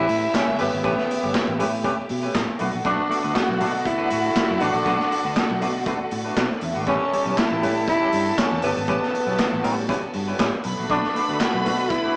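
A growling, breathy tenor saxophone carries the melody up front with raspy subtone and scooped notes in this driving, danceable disco excerpt at 119 BPM, moving between A9 and Bm7. A rich, smooth violin section plays a second line while a very quiet, lush string section holds sustained chords behind it, and a clean semi-hollow electric guitar with tremolo adds accompaniment over a round, amped fingered bass. A saturated vintage drum kit with punchy kick, snare, hi-hat and handclaps sits up front, and the band sounds as if playing live in one stone room with a wet reverb and a small speaker sound.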